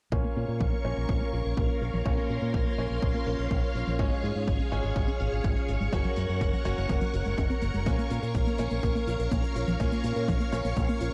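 Melodramatic and nostalgic, this short italo disco cut moves with a straight 4/4 feel in a minor key, its chords shifting from Bbm through Db/Ab and Gb before returning to Bbm at 7.9 seconds. A lush vintage string machine holds sustained chords on top, its slow-attack sawtooth tone thickened by a sub octave and ensemble chorus. Beneath it, a warbling, lo-fi pluck sits in the background playing arpeggios, its nasal, dusty timbre coloured by chorus and tape echo and shaped by a filter sweep. A bright grand piano adds brilliant, open stabs, also run through tape echo and a filter sweep. The low end comes from a punchy analog electronic kick with a large-room character, which stops at 10.9 seconds, and a fingered electric bass whose envelope filter gives it an amped, direct edge, while a very quiet, airy hi-hat ticks above. The overall sound is dry and close, with the feel of a 1970s studio.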